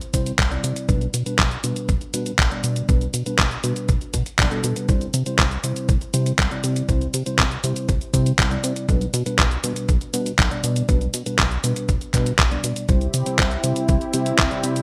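An up-front, detuned 8-bit drum machine with cabasa, handclaps and hi-hat in gated reverb drives this playful, sunny italo disco cut at 120 BPM in C major, joined from 0.1 s by a thumpy, tape-colored electronic kick, a glossy, dark chorused synth bass with a plucky pulse-and-sawtooth tone, and mellow tine electric piano stabs through digital delay over a C to G/B progression, before a lush, thick detuned unison pad with chorus arrives at 12.9 s, all set in a bright 1980s-style digital production with light ambience.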